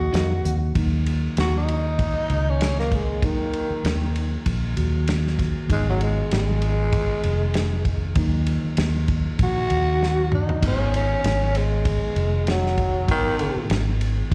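A growling, breathy tenor saxophone leads this brooding soul blues excerpt in Eb minor at 97 BPM, its raspy subtone and scooped notes sitting up front with plate reverb, slapback echo and digital delay, while a bright, clean guitar adds brief stabs in the background at the very start. Beneath it, a mellow tine electric piano plays accompaniment through its built-in speakers, and a round, foam-muted fingered bass and a dry, muffled drum kit with dark cymbals hold a straight-eighth feel with a light swing. The drums play a fill at 10.0 seconds as the chords move between Ebm and Abm, all heard as a live gig through the venue's PA with recital hall reverb.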